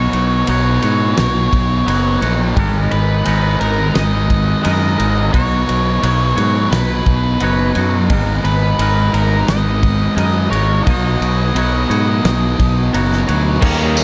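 A light reverb and small-room ambience frame this short cut from a longer rock piece in the shoegaze and dream pop vein, moving at a straight 87 BPM in 4/4 with a melancholic, dreamy mood. Up front, a punchy fingered electric bass anchors the low end, while a loose indie drum kit brings a fat snare, a punchy kick and dark crash and ride cymbals in a pumping studio room. Over the alternating Badd9 and G#madd9 chords, a thick fuzz guitar drenched in lush chorus grinds out a riff, joined by a bright, clean, twangy electric guitar whose riff is washed in reverse reverb. A dusky octave-fuzz lead guitar carries the melody through distortion and tape echo. In the closing moments a double-tracked crunchy overdriven guitar slips in behind at 13.6 s, a warbling, nostalgic, lo-fi tape-like pad surfaces at 13.9 s, and a jingly, close and dry tambourine lands at 14.0 s.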